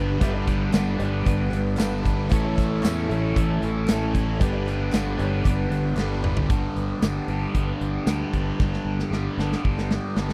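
Classic rock with a swaggering, driving feel, this dry, close 1970s-style studio fragment stacks a crunchy overdriven guitar riff, a bright phaser-treated electric guitar and a very quiet double-tracked semi-hollow guitar over a growly fuzz bass and a big, punchy up-front drum kit with tambourine, alongside a shimmering twelve-string acoustic in the background, a barely audible shouting rotary-speaker organ, a very quiet woody upright piano and crisp handclaps, until the twelve-string, organ and semi-hollow guitar stop at 6.5 s and a drum fill from 8.6 s drives the remaining guitars, bass and drums.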